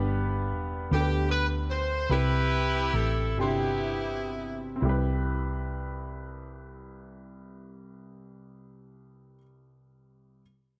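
This slow gospel fragment in 6/8 is jubilant and soulful, moving at roughly 39-54 BPM in dotted quarters in C major and slowing through its first 4.8 seconds as the harmony moves from G to Cmaj7. A woody, natural upright piano sits up front as accompaniment, alongside a dark, round, amped hollow-body electric bass played with the fingers. A tight, jazz-style horn section with light vibrato carries the melody from 0.9 to 4.8 seconds, all set in light reverb and studio ambience.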